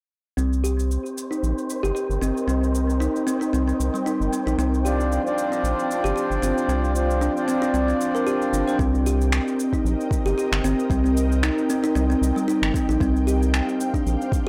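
This earthy, meditative excerpt of organic downtempo in C minor opens with woody, plucked kalimba arpeggios carrying tape echo and a low-pass filter, a round, deep analog bass up front, and overdriven electronic shaker and finger snaps, all moving with a swung 16th feel at 114 BPM over Cm7 and G7sus4 chords. An ethereal, detuned pad with chorus, sidechain pumping, its own reverb and a filter sweep arrives at 1.5 s, while a breathy, wind-like noise texture sits in the background and a reedy, breathing pedal harmonium with tape echo joins at 4.8 s. At 8.8 s the texture and harmonium drop away as a soft electronic kick drum enters, and the recording as a whole sounds blown-out in a moderate digital room.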